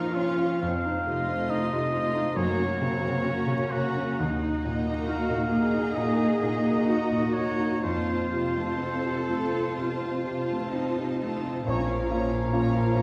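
A clear, vintage-toned grand piano sits up front with the melody, its short-sustain notes ranging from Bb1 to F4 in this brooding, tragic classical passage cut from a longer piece. The pulse moves freely in rubato at around 60-71 BPM in 4/4, tuned to A4 = 437 Hz, and the harmony passes from Bb minor through F7, Gb, Eb minor and F before returning to Bb minor at 11.7 s. Behind the piano, a studio violin section also carries the melody high above with smooth vibrato. A lush, distant symphonic violin section and a solo oboe with soft attack and light vibrato carry second lines, while a close viola section with expressive portamento accompanies over a rich cello bass. At 11.7 s the texture thickens as a pure, straight-toned concert flute, a punchy but very quiet clarinet, a mellow bassoon and a distant double bass section join until the end, and a very quiet French horn section and a trumpet section add brief sustained chords and stabs that stop by 12.0 s. 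Heard from further back in a recital hall with a reverberant 1.8-second decay and a layer of vinyl crackle, the recording has an aged, mournful quality.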